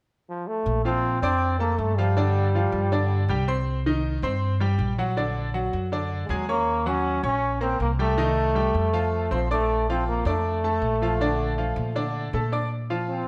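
A bright solo trombone with vibrato carries the melody in this joyful, danceable salsa excerpt in Bb major at 159 BPM. It enters at 0.3 seconds, pauses at 3.5 and returns at 6.3, sounding roomy and slightly distant despite sitting up front. Beneath it, a woody, thumpy pizzicato upright bass and a brilliant, worn concert grand piano with deep lows move through chords such as Bbmaj9, Ebm7 and Bbmaj7, all set in a large studio reverb.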